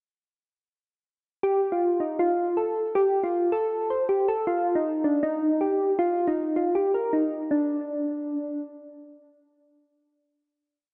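A dark, eerie hip hop piece at 158 BPM with a half-time feel in D phrygian, featuring solo soft electric-piano-like synth keys with a round, sine-like tone and notes that have a fast attack and then decay. The keys sit up front, colored by chorus, phaser and digital delay, and play a looping sampled-style melody as a hook from 1.4 s before a final note rings from 7.5 s into a lush hall reverb that trails out to 10.5 s.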